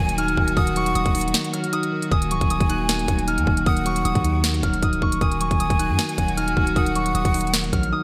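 A half-time trap groove in 4/4 drives this brooding, melancholic hip hop excerpt, with an up-front electronic kit of hard-clipped kick, sharp snare and crisp hats under gated reverb, and a brief break from 1.3 to 2.1 seconds. A deep, sine-like 808-style bass sustains and decays beneath a clean, mellow tine electric piano and a chamber string section bowing gut-toned chords with light vibrato in the background. On top, a ringing fingerpicked Celtic harp carries the high melody while a breathy, slightly unsteady jazz flute adds a second line, both trailed by digital delay, all within a bright 1980s-style digital production and small-room ambience.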